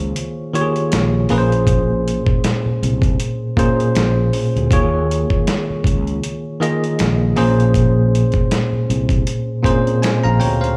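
Introspective and late-night, this short R&B and neo-soul excerpt moves at an unhurried 79 BPM in Bb minor, with a light 16th-note swing giving it a relaxed sway. A bell-like tine electric piano sits up front, clean and bright, carrying the harmony as it moves between Eb7sus4 and Bbm9 across the full 10.8 seconds. Underneath, a sustaining fretless electric bass holds the low end with a growly, amped tone, staying in its lowest register. The drums come from a dusty, sampler-style kit of hi-hat, thumpy kick and medium-tuned snare, compressed and overdriven into a gritty texture that sounds re-recorded in a small room. The whole piece is heard as a live gig through a venue's PA, with club ambience and light reverb framing the players.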